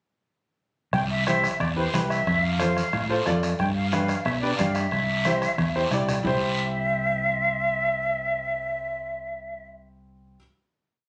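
Captured on a phone in a lightly reverberant studio room, this festive, sunny cumbia piece opens at 0.9 seconds with an airy, vibrato-laden jazz flute playing call-phrase motifs over a dark, round fingered electric bass figure, a soft-beater bombo with rim and a raspy guiro, joined at 1.3 seconds by a woody upright piano's rhythmic triads with audible action noise and very quiet congas, before a drum fill leads at 6.2 seconds into a held final chord carried by flute, bass and piano.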